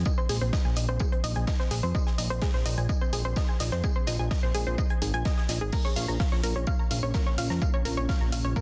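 A straight 4/4 pulse at 127 BPM is driven by an overdriven, punchy electronic kick up front, joined by an overdriven analog drum machine's crash and hi-hat and a gated 80s kit of hi-hat, fat snare and tambourine set in an airy stone room, with sidechain pumping on the hats. In this hypnotic, cinematic melodic techno cut, a thick, detuned sawtooth bass with a moving filter sweep pumps beneath bright, round analog pluck arpeggios coloured by chorus and dub echo, moving from Ab/Bb to Bbm at 5.7 seconds. At 6.9 seconds a deep, moody, warbling pad with slow attack and built-in reverb rises in the background to close the dense, heavily limited mix.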